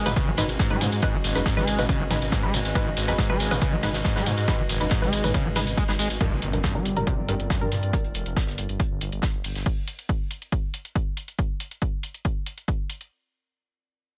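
A squelchy, distorted acid bass riff drives this intense, relentless slice of peak-time techno, pumping against a punchy, up-front analog kick and a layered electronic kit of hats, ride, tambourine and toms, with a fat-snared acoustic soul kit tucked in the background. Beneath it, a deep, rumbling detuned saw bass, muted dub chord stabs coloured by phaser and tape echo, and a warbling, nostalgic lo-fi pad fill out the dark harmony. At 6.2 seconds a very quiet impact lands as the acid bass gets a filter sweep and the pad fades out. Once the bass, stabs and riff have dropped away, the kick and electronic kit carry on, the kick stopping at 12.8 seconds and the kit at 13.1.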